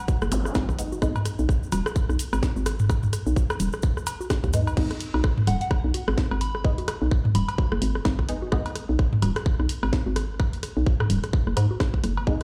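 Hypnotic and cool, this minimal techno excerpt swings on a tight, up-front kick, a booming tape-warm analog drum machine of bongos, cowbell, rim click and toms with delay, a grainy cabasa that stops at 4.8 seconds, a hollow, bouncy FM bass pumping under sidechain, and a garage kit with a cracking snare, crash and hi-hat. Meanwhile a brief electronic zap sounds at 0.3 seconds, muted detuned dub chord stabs sound through ensemble chorus and delay, and a soft, pure vintage synth bell warbles a short melody from 5.5 to 7.5 seconds during the drop, all in a big bare room with large studio reverb.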